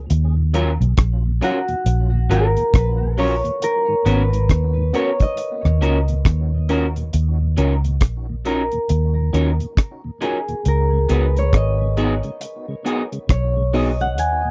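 A dry, close 1970s-style studio sound frames this bittersweet, smooth lovers rock reggae excerpt in Eb minor at 68 BPM, with a swung 4/4 feel carried by a dark, tight-kicked acoustic drum kit playing hi-hat, kick and rim click alongside a round, punchy, foam-muted fingered electric bass, both up front. A mellow tonewheel organ with chorus vibrato and tape echo and a clean tine electric piano sit in the background, while a twangy, slightly broken-up electric guitar through a small old amp adds bright picked stabs over chords moving from Ebm9 through Abm11 and Ebm7 to Db9sus4. The thumb-plucked, ringing concert harp carries the melody from 1.4 seconds, touched with tape echo, and takes a solo from 7.1 seconds to the end at 14.5 seconds.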